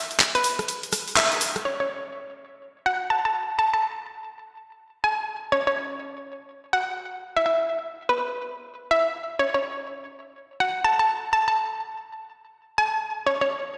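A hollow, nasal square-wave pluck with a detuned edge, sub octave and chorus-and-tape-echo sheen leads this swaggering, aggressive bass house excerpt, running from 0.3 to 13.5 seconds between B4 and A5. It sits up front at 124 BPM in 4/4 with a 62% swing on the sixteenths. In the opening drop, a layered electronic garage kit of crash, handclaps, bright filtered hats, ride and rim click plays until 1.8 seconds, with a band accent at 1.2 seconds, while a grainy, close egg shaker sits in the background. After that the pluck carries on through a dreamy, reverb-soaked hall.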